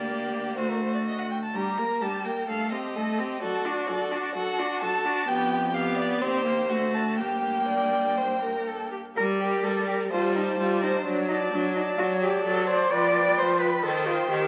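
Heard through the crackle of a very old 78 rpm record, a string quartet plays in a moderately reverberant recital hall, giving this quick, restless classical-period movement, cut from a longer piece, an urgent push and pull of rubato. The first violin carries the melody with a rich, close, evenly bowed tone and vibrato, while the second violin's soft-attacked, expressive line glides with portamento above an up-front, smooth viola accompaniment. A warm cello anchors the bass, also sliding with portamento, as the music turns to a new section at 9.2 seconds.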